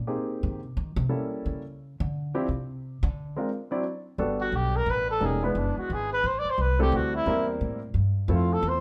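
A moderate large-studio reverb gives this short cut from a longer jazz piece a roomy feel. It is a playful small-group swing-and-bop waltz at 175 BPM in 3/4 with a swung eighth-note lilt. A woody, thumpy pizzicato upright bass takes the opening solo from 0.0 s over a warm baby grand piano's chords. At 4.4 s a dark, distant-sounding trumpet enters with scooped notes for its own solo as the harmony settles into G major.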